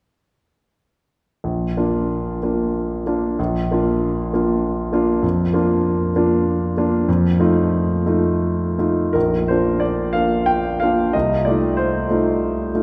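A smooth, vintage-toned grand piano enters up front at 1.4 s, playing a lyrical, warm romantic character piece alone in Bb major and 3/4, its rubato tempo drifting between 77 and 102 BPM across a range from Bb1 to G5 and tuned to A4 = 439 Hz, with harmony moving from Bb through Bb/F and F7 before a new section returns to Bb at 9.1 s and settles on F7/C, all bathed in a long, wet cathedral reverb in this fragment cut from a longer piece that stops at 12.8 s.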